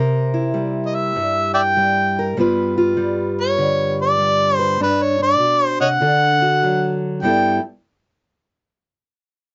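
Swung eighths at 99 BPM in 4/4 drive this rollicking, soulful acoustic country blues excerpt, where a boxy parlour steel-string guitar with fresh strings fingerpicks the accompaniment from 0.0 s through C7, G7 and D before landing on G69, while a harmonica enters up front at 0.9 s with a jazzy solo full of light vibrato and tongue slaps, all heard in a dark, warm booth with a short, moderate ambience.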